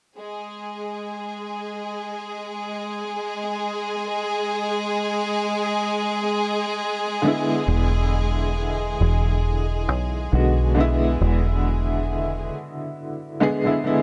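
A slow 68 BPM trip hop groove in 4/4 with a light 16th-note swing sets a smoky, melancholic mood in this short cut from a longer piece. A biting, intense violin section opens alone at 0.2 seconds with sustained chords, its bowed tone smooth on top, before a worn, woody, slightly detuned upright piano enters at 7.2 seconds on an E7 chord, coloured by tremolo, vintage 12-bit sampler grit and tape echo. A dark, round, foam-muted fingered electric bass joins soon after, sitting up front in a small room with light reverb.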